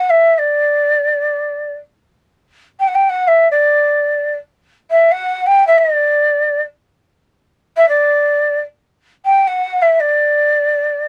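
A breathy, end-blown ney carries this stately, passionate Turkish makam excerpt alone in free time, its reedy cane tone shaded with vibrato and tongued notes between D5 and G5 in D makam rast, set up front in a dry, close 1970s-style studio sound with light reverb.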